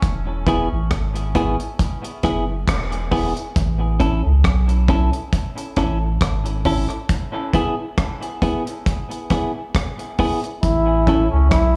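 Dub reggae with a hazy, laid-back feel, this short excerpt cut from a longer piece rests on a round, sine-like sub bass and a dry reggae kit of tight kick, hi-hat and rim click, with a clean, compressed electric guitar, soaked in dub echo, entering at 0.5 seconds over a lightly swung groove that moves between E and A. Near the close a bright trombone with light vibrato appears at 10.6 seconds, also carrying dub echo, and a hollow, dark organ stab with chorus flickers briefly in the background at 11.1 seconds. The echo-heavy mix sits in light studio reverb, with bass, drums and guitar placed up front.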